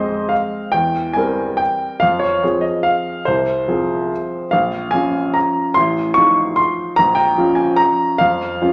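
A clear grand piano plays alone, up front and intimate, with its action noise audible beneath a natural tone that spans from deep bass to high treble. This wistful, bittersweet classical waltz in F minor moves at 145 BPM in 3/4, its beats uneven and pulled by rubato as the harmony shifts between Fm, C7/E, Bbm and F7/A. A wet large-studio reverb surrounds the piano through this 8.7-second fragment cut from a longer piece.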